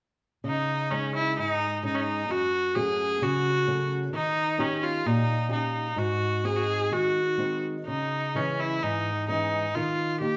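A bright, nasal solo viola carries the passionate, longing melody with light vibrato and an airy, earthy bow over a thumb-plucked acoustic flamenco guitar whose finger squeaks stay audible, both up front in this rubato fado-style ballad in C# harmonic minor at 65 BPM in 2/4, cut from a longer piece and heard as a live band in one room bathed in large studio reverb.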